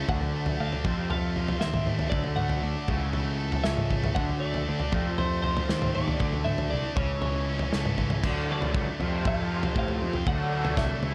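A dark, warm production with light reverb frames this short indie rock excerpt, cut from a longer piece, moving at 118 BPM in a straight 4/4 with a carefree yet wistful mood. Two bright, overdriven electric guitars drive the riff from the start, one of them a raw garage guitar thickened by ensemble chorus and slapback echo. Underneath, a fuzz-soaked picked electric bass sits round and punchy, while a loose indie drum kit recorded in a small room brings a tight kick, a medium-tuned snare, toms and dark crash cymbals. A clean, compressed twelve-string electric guitar carries the melody high above, its twangy tone touched with slapback echo. The chords cycle through D, F and A/C#, then at 8.2 seconds the harmony shifts to Dadd9 and F for a brief new section that carries to the end.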